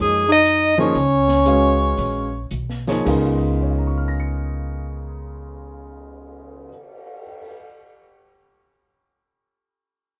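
A bright soprano saxophone with light vibrato carries the melody over a mellow trombone line, an intimate grand piano with audible action noise and a woody pizzicato upright bass in this hypnotic, searching modal jazz excerpt, which swings and slows in its opening moments; a dark, small-room drum kit with a punchy kick and cymbal swell enters at 0.4 seconds, the horns drop out at 2.5 seconds, and the long-sustaining piano rings on alone at the close.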